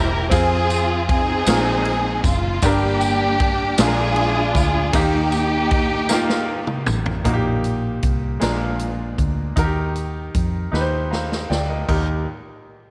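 A lush, bowed string section sings the melody over a brilliant concert grand piano with deep bass and a foam-muted fingered electric bass in this soulful, uplifting slow gospel excerpt in Eb major at 52 BPM in 6/8, with a swinging big-band drum kit and jingly tambourine joining at 0.3 seconds. The strings, up front with expressive vibrato, carry the tune through chords moving from Fm, Bb9sus4 and Gm to Bb7 and Eb, then stop at 6.9 seconds, leaving piano, bass and drums to continue over Eb/Bb, Bb7 and Eb. The kit's punchy kick and medium-tuned snare ring with a natural hall tone and play fills that close the first two sections, the second at 10.7 seconds, all set in a moderate echo chamber reverb.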